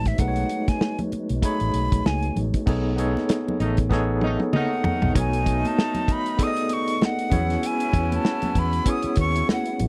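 Lush, romantic 1970s-style soul at 97 BPM with a swung 16th feel, cut from a longer piece, where a breathy, up-front jazz flute carries the melody, soloing through the opening 2.7 seconds, over barky, lightly overdriven tremolo electric piano, a very quiet percussive tonewheel organ with key click and fast rotary speaker, a round, foam-muted fingered bass, a tight, dark-cymbaled soul drum kit that plays a fill from 3.9 to 5.2 seconds, bright high-tuned congas in the background, and a clear vintage horn section adding stabs from 3.6 seconds, all captured in a dry, close studio sound moving from a B13 to an E6 chord at 7.3 seconds.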